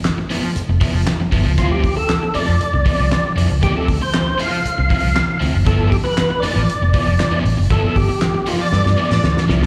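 A percussive tonewheel organ carries the melody up front, its fat, lightly overdriven tone marked by key click, chorus vibrato and a slow rotary speaker, entering at 1.6 seconds over a sly, hypnotic funk groove in straight 4/4. Beneath it, a cloth-damped drum kit thuds with a fat snare, tight kick, handclaps and hi-hat, its top end rolled off, while a vintage muted fingered bass sits dark and round under the harmony. A crunchy overdriven guitar comps in a picked accompaniment treated with harmonic tremolo and slapback echo, and distant, very quiet congas add soft-handed texture from far back. The harmony moves from a rootless G13 to Dm9 and back to G13, and the band hits an accent from 7.7 seconds, with the drums playing a fill from 8.7 seconds. A clear, punchy horn section with light vibrato slips in briefly at 8.7 seconds for a second line, all heard as a live gig through the venue's PA with the ambience of a recital hall, in a fragment cut from a longer piece.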